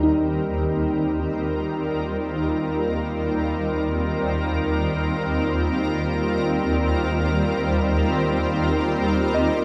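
Serene and warm, this ambient fragment drifts in open, unmeasured time. Up front, a shimmering pad holds sustained chords for the whole 9.6 seconds, its ethereal, bright tone lifted by an octave-up shimmer, granular texture, chorus and its own reverb, with slow attacks and long releases. Further back, a soft synth bell traces gentle arpeggios with pure, mellow FM tones that strike quickly and decay, coloured by chorus, phaser and tape echo. Also in the background, a bowed-like drone sustains a string-like, slightly tense sawtooth sound, detuned in unison with a noise layer, vibrato, phaser and reverb. The whole piece sits in a cathedral-sized reverb with a long tail and carries the character of cassette tape.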